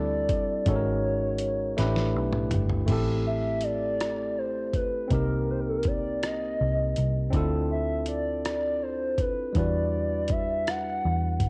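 A hollow, woody synth lead with a clarinet-like voice carries the melody through this sultry, yearning slow R&B excerpt, its soft, sustained tone colored by chorus and vibrato. Set in A minor at 54 BPM in a straight six-eight, it rides over a barky tine electric piano, lightly overdriven through a combo amp and given a cassette-tape grit, which supplies the chords. A vintage muted picked electric bass sits up front with a dark, round, amped sound, while a dusty sampler-style soul kit enters at 0.3 s with a thumpy kick, medium-tuned snare, rim click, hi-hat, toms and crash, compressed and gritty. A drum fill from 1.8 to 2.9 s closes the opening passage of suspended ninth chords and leads into a progression that moves from Am7 through Cm7 and Dm9 to Em9. The excerpt has the intimate character of a home cassette recording, bathed in a moderate spring reverb.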